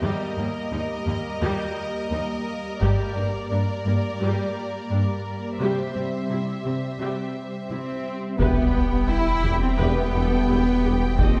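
Heard from further back in a wet scoring-stage space, this brooding, futuristic hybrid orchestral and electronic film-score cue in E minor at 86 BPM opens with up-front rich cellos, lush violas, smooth warm violins and a hollow, flute-like chorused pad moving through D#, Gm and C, with heavy-stick taiko striking from 2.8 to 4.2 seconds, before an impact on Em at 8.4 seconds brings a dark, distant high violin melody, clear trombones, roomy French horns, a mellow tuba, woody double basses, a punchy pitch-dropping sub bass, renewed taiko and an electronic sub drop.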